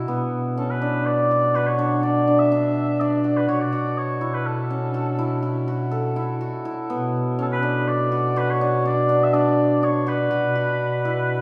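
Shimmering hammered dulcimer arpeggios and a warm, up-front bass clarinet open this restless, hypnotic chamber piece in 7/4, joined by faint bell-like celesta touches in the background at 0.1 and 9.3 seconds while a mellow oboe with light vibrato carries the melody from 0.6 seconds, all heard from further back in a reverberant recital hall.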